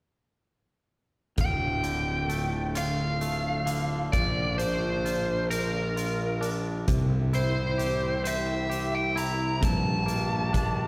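Moving in a slow 6/8 at 44 beats per minute counted in dotted quarters, this cinematic, cathartic post-rock passage in D minor is cut from a longer piece, with every part arriving together at 1.4 seconds. A huge arena drum kit of hi-hat and punchy kick sits in a pumping hall sound beneath a round, fuzzed picked electric bass that stays up front in the low register. A clean, compressed twangy electric guitar picks arpeggios across a broad range, while an analog string pad holds silky, detuned chords with ensemble chorus and vibrato in the background. Over them, a nasal lead guitar with a parked wah and overdrive carries the melody between Bb4 and Bb5, placed prominently in the mix. The harmony moves from Dm to Bb, then C, and settles on Gmadd9/Bb, all bathed in a wet concert hall reverb that gives the passage a grand, spacious sound.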